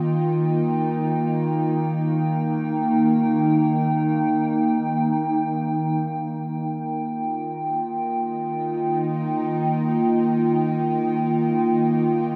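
Floating in free time with a steady pulse absent, this ambient excerpt from a longer piece rests in Eb major and carries a warm, peaceful mood. A warbling, tape-like synth pad sits up front, holding sustained chords from Eb3 to G5 with a slow attack and long release; its detuned, lo-fi tone is dark and nostalgic, thickened by chorus and its own built-in reverb. Beneath it, a bowed, string-like drone with a tense edge holds between Eb3 and Eb4 at a lower level, its detuned sawtooth body touched with vibrato and a noise layer. Both parts sound through the full 12.4 seconds, with the synth drone fading out across the first 6.1 seconds. The whole recording is bathed in a huge, wet reverb whose long tail of 7.4 seconds blurs every sustained tone into a soft haze.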